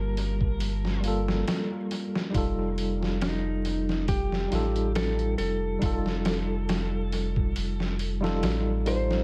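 A dark, compressed slide lap steel carries the melody through vintage sampler grit and dub echo in this brooding, hypnotic trip hop excerpt at a swung 69 BPM, over a clean tine electric piano with tremolo and tape echo, a deep, round sub bass, and a gritty, pitched-down sampler drum kit with a thumpy kick and analog delay that enters at 0.2 s, all moving from Gm9 to F9 in a dry, echo-heavy mix dusted with vinyl crackle.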